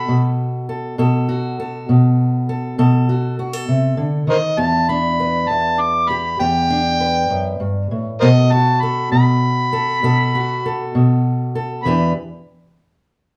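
A straight 12/8 feel carries this brooding, soulful acoustic country blues fragment, where an amplified, gritty harmonica takes an up-front jazz-style solo of tongue slaps, scooped notes and light vibrato until 11.8 seconds over a dark, woody fingerpicked parlour guitar with old strings, the pair sharing a moderate studio reverb that gives them a live, one-room feel.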